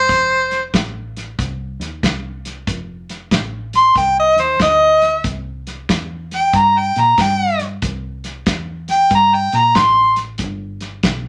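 Laid-back and gritty, this electric blues shuffle swings easily in four, cut from a longer piece. An overdriven harmonica carries the melody up front from the start, its warm tone smooth on top, with light vibrato, scooped notes and a jazz-inflected solo voice, until it drops out at 10.2 seconds. Beneath it, a deep, fingered electric bass sits low in the mix with a dark, round, foam-muted sound. A soul drum kit of hi-hat, kick and snare comes in at 0.1 seconds, its tight kick, medium-tuned snare and rolled-off top placed close in a small room. A wet, intimate room ambience surrounds the band as the harmony moves from F7 to C and then to G.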